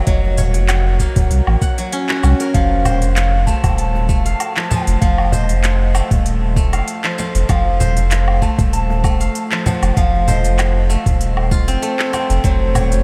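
A warm, mystical mood hangs over this short organic downtempo excerpt, cut from a longer piece and moving with a light swing. A bright, silvery steel-string zither played with fingerpicks rings out arpeggios through an analog delay, while a dark, slightly broken-up electric slide guitar carries the melody, bathed in a diffuse ambient delay. Underneath, a round, sine-like sub bass sits up front with a fast attack and sustained notes, pumping against the sidechain. A gritty, thumpy sampler-style kick drum anchors the groove alongside an electronic kit of crisp hi-hats, handclaps, shaker and woodblock that sounds re-recorded in a large room. A very quiet, snappy cajon played with soft hands adds acoustic texture, and the harmony shifts from Gb to F at 2.5 seconds, with a final Gb5 heard at 12.4 seconds.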